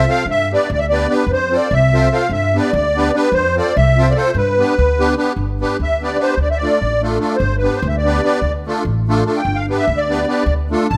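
A 5/8 pulse at 294 BPM counted in eighths, played straight, carries this festive, wild Balkan folk fragment in G mixolydian, cut from a longer piece. A musette accordion takes the melody up front, reedy and shimmering with its musette tuning and a boxy small-room color. A second musette accordion holds the accompaniment below it, close-miked, dry and full. The upright bass is plucked with a woody, growly tone, bright from its steel strings, and sits up front as well. The harmony rocks between G and F, then shifts to alternate Dm and G from around 6.4 seconds, while the accordion solo runs from 5.4 seconds to the end at 11.0 seconds. Detailed close microphones catch the players inside a moderate recital hall reverb.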